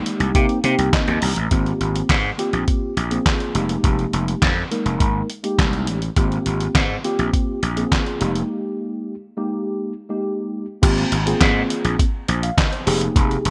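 Early-eighties boogie funk at 103 BPM in 4/4, danceable and slick, with a mellow tine electric piano carrying chorused chords through Abmaj13 and Fm11 and opening with a short fill at 0.3 seconds. A gritty, overdriven slap bass growls up front beside a lo-fi, sampler-style drum kit whose thumpy kick, fat snare, hi-hat, handclaps and crash are compressed and muffled under gated reverb. A break arrives at 8.5 seconds, all within a bright 1980s-style digital production with light ambience, cut from a longer piece.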